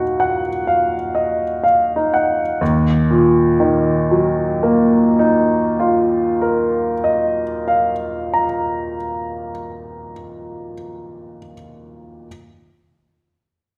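This is impressionist classical solo piano, a mysterious and hazy passage cut from a longer piece. A baby grand carries everything from the first moment to 12.3 seconds, moving with a free, rubato feel in four and spanning a range from Eb2 up to Bb5. The opening gesture slows down through its first 2.6 seconds before a new section unfolds until 10.1 seconds. The piano sounds clear, intimate and natural, placed up front with long sustain and audible action noise that brings the mechanism close to the ear. It sits in a wet recital-hall reverb with a 1.4-second decay, giving the church or concert-hall setting an enveloping, misty glow.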